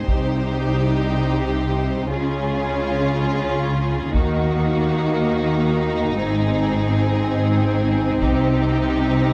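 Epic and dramatic, this short cut from a cinematic orchestral film score builds in free time over chords moving from Cm through Db, Ebm and Ab back to Cm, with lush violins carrying a vibrato melody above a focused second violin line and bowed violas, mellow French horns holding sustained chords, smooth cellos in the background and soft-attacked double basses up front anchoring the bass, while a dry, hard-stick taiko ensemble strikes at 0.1, 4.1 and 8.2 seconds, all captured with close, detailed microphones and light reverb.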